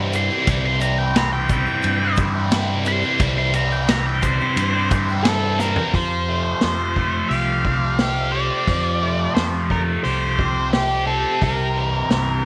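Psychedelic rock at 88 BPM in a straight 4/4, hazy and hypnotic, this excerpt sets a bright, overdriven, double-tracked stack guitar riff with phaser up front over a round, dark fingered bass and a punchy vintage kit with dark cymbals and a rolled-off top, while a very quiet tonewheel organ holds full sustained chords through a slow rotary speaker. An octave-fuzz lead guitar with slapback echo takes a solo from 0.2 seconds, its line ranging from G4 to C6, and a grainy egg shaker sits faintly in the background until 5.8 seconds. A drum fill at 5.6 seconds carries the music from C into an Fadd9 passage at 5.9 seconds, returning to C near the end, all within a small, lightly reverberant room.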